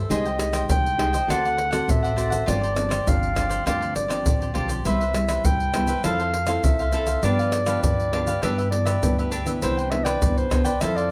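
Playful and festive, this short cut from a longer samba and choro piece features a mellow, smooth-topped clarinet playing a classical-style solo over a chord progression that opens on Abmaj7/C and settles onto Cmaj9 at 9.6 seconds. Crisp picked cavaquinho and thumb-plucked classical nylon-string guitar fill out the harmony, while a woody pizzicato upright bass anchors the low end. An up-front percussion group of tube shaker, tight surdo, pandeiro and tamborim sits in a small room, with light reverb giving the ensemble a gentle sense of space.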